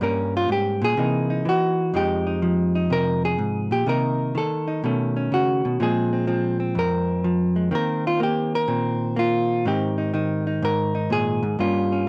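Late-night and cool, this short cut from a longer solo jazz piece features a single hollow-body electric guitar playing with a swung feel in 4/4. The guitar sits up front with a dark, clean, picked tone, ranging from F2 to Bb4 across the full 12.1 seconds. Its harmony moves through shadowy changes such as Gdim, C7alt and Fm9 before settling onto suspended and major-seventh colours like Ebsus2 and Abmaj7, closing on Gm7b5. Light reverb surrounds the playing, while a worn, cassette-like tape character adds a warbling pitch drift that gives the sound an aged, wavering quality.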